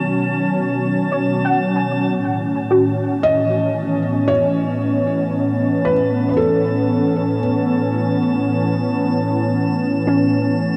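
A filter sweep opens a detuned, chorused sawtooth pad up front over a B7 chord, alongside round, dark plucked arpeggios with tape echo and a faint glassy texture of drifting overtones. This serene, luminous ambient piece moves at a slow 57 BPM in A lydian, settling onto A at 2.2 seconds as the bright glass texture fades in. A mellow, felt-muted upright piano carries an intimate melody from 3.2 to 7.4 seconds, all within a vast, wet reverb.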